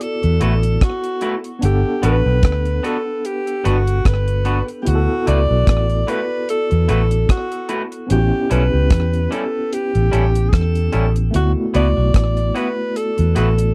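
Lovers rock reggae with a tender, romantic mood and a gentle swing, set in a dry, close 1970s-style studio sound. A breathy, up-front alto saxophone carries the melody with vibrato, subtone and scooped notes, touched with tape echo, over an overdriven tine electric piano whose gritty, barky chords shimmer with fast tremolo and tube saturation. A deep acoustic reggae drum kit with a tight kick, hi-hat and rim click sits beside a dark, round, foam-muted fingered bass that enters at 0.2 seconds, while a twangy, slightly broken-up electric guitar through a small old amp adds lo-fi picked stabs from 0.4 seconds.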